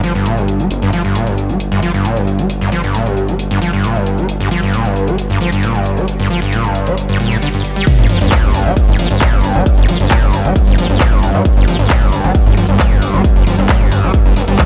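Driving peak-time techno with a hypnotic, relentless mood, heard as a short cut from a longer piece. A squelchy, screaming acid riff sits up front, distorted and resonant with analog chorus, digital delay and sidechain pumping, while a filter sweep runs across it through the opening half. Beneath it, a gritty, aggressive sawtooth synth bass with tube saturation and its own sidechain pumping carries the low end, and a techno drum kit supplies handclaps, metallic hi-hats and crash cymbal, with low-pass filtering and pumping on the hats and cymbals. A background swell and sub drop rises at 7.2 s into the drop at 7.9 s, where a distorted, layered electronic kick lands up front with an impact. From 9.5 s a very quiet, swarming drone of detuned, granular unison tones adds tension under the groove, and light digital ambience frames the mix.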